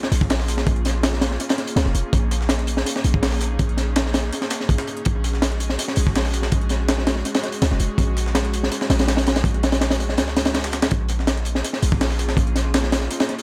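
This frenetic, raw drum and bass excerpt with a jungle edge opens on a barely audible electronic impact that fades by 0.7 seconds, as an airy, breathy pad settles in with soft, warbling, detuned chords carried on a chorus effect. Up front, a crunchy breakbeat kit drives the groove with a punchy kick, a high-tuned snare and hi-hats, its saturated, gritty tone dark with a rolled-off top and touched by analog delay. Behind it sits a second, sampler-style break of hi-hat and snare, compressed and tape-tinged, re-recorded in a small room, high-pass filtered and also fed through analog delay. A deep, boomy 808-style bass with a sine core and a noise layer sits up front from 0.1 seconds, its fast attack decaying into a mellow tail. The harmony moves from Bbm7 to Gbsus2 at 5.1 seconds and back to Bbm7 at 10.9 seconds, all within an echo-heavy mix with light reverb and small room ambience.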